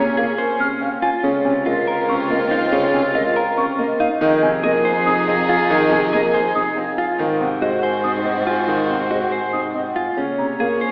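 Minimalist classical pattern music in Bb minor, urgent yet meditative, pulses at 282 BPM in eighths through a straight 7/8, in a short passage cut from a longer piece. A ringing, metallic vibraphone carries the melody over a distant oboe second line, while a compressed, up-front clean electric guitar and a hollow flute in the background spin arpeggios above a vintage grand piano accompaniment, dark bowed violin chords and a focused solo cello bass. Chords move from Bbm7 through Dbmaj9, Fm7 and Ab7, all set in a wet scoring-stage reverb with the sound of AM radio.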